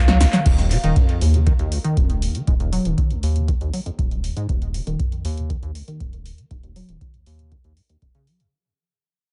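A straight 4/4 acid house groove at 119 BPM in Eb minor opens with a punchy, overdriven analog drum machine fill at 0.2 seconds, and the deep, tape-warm electronic kick enters at 0.5 seconds as a dark, detuned pad with chorus and phaser drops away. Underneath, a round, mellow wave-folded bass pumps against the kick, while a squelchy, resonant square-wave acid riff sits up front with tube saturation, analog chorus and tape echo, its filter sweeping from 0.5 seconds onward. The trippy, hypnotic mix is dry and echo-heavy with a dull top end, and the whole passage fades out from 0.5 seconds in this cut from a longer track.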